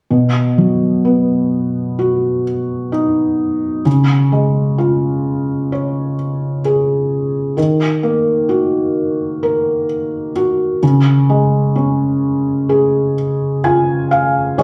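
Emotional and hopeful, this slow pop fragment at 64 BPM in straight 4/4 features a felt-muted upright piano playing soft, mellow, intimate accompaniment up front with audible action noise, moving through B, C#, D#m and back to C#, bathed in a large studio reverb that carries a live-room feel, before a felt piano fill arrives at 13.2 s.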